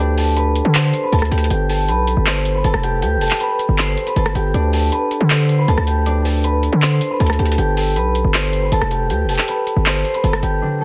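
A dense, heavily limited, dry master dusted with vinyl crackle carries this menacing, dark hip hop and trap cut at 158 BPM in a half-time feel, where a ringing, thumb-plucked concert harp carries the melody over D5 and G chords, a heavy, saturated distorted 808-style bass with a fast attack and noise layer growls beneath, and an electronic trap kit of handclaps, rim clicks and metallic hi-hats enters at 0.2 seconds, with all three parts sitting up front.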